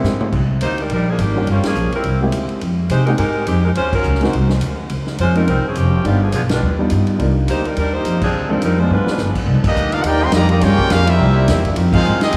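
A woody, growly upright bass sits up front through this dramatic, swinging big band jazz excerpt, driven by a punchy drum kit with dark cymbals in a big room and marked by drum fills and band accents. A clear saxophone section with light vibrato carries the melody over an intimate concert grand piano in the background until about 9.3 seconds, and a brilliant trumpet section takes over the tune at about 9.7 seconds. A present trombone section adds a second line from 8.9 seconds, and a very quiet, soft-attacked saxophone section holds sustained chords, all within a moderate, echoing cathedral reverb.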